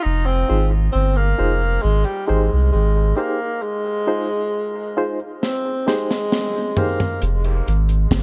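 This excerpt has a dark production, with light reverb and the feel of a small room. It is a hypnotic, spacious dub reggae piece in F minor at 67 BPM, cut from a longer performance. A tenor saxophone with light vibrato carries the melody from the start, sounding distant yet up front, while a soft, round sub bass sits deep underneath and an electric piano adds reedy, barky stabs, lightly overdriven with fast tremolo, a high-pass filter and dub echo. The saxophone also trails dub echo as the chords move between Fm7 and Abmaj7. During a break from 3.6 seconds, a dry, acoustic drum kit with a high-tuned snare and tight kick enters at 5.4 seconds with a fill, then carries on with the bass after the saxophone stops at 7.2 seconds, settling on F minor.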